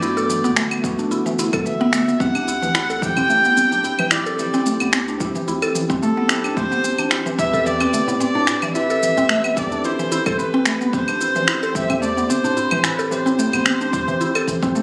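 A mystical, hypnotic stretch of organic downtempo at 110 BPM in 4/4, cut from a longer piece, with a light sixteenth-note swing and an A dorian color moving from Gmaj7 to D7sus4 and settling on Am7 at 6.6 seconds. A clear, nasal bowed kamancheh carries the melody up front, its single player leaning into vibrato and portamento, with a digital delay trailing the line. Beneath it, a bell-like tine electric piano adds bright, clean chords that pump against the kick and echo through delay, while a woody mallet-like synth pluck spins arpeggios colored by chorus, phaser and delay. A round analog bass sits deep and mellow in the background, also pumping with the kick. The drums pair an up-front layer of electronic shaker, finger snaps and claves with a deep, tape-warm electronic kick that joins at 0.8 seconds. It all sits in a light club reverb, captured on a phone in the room.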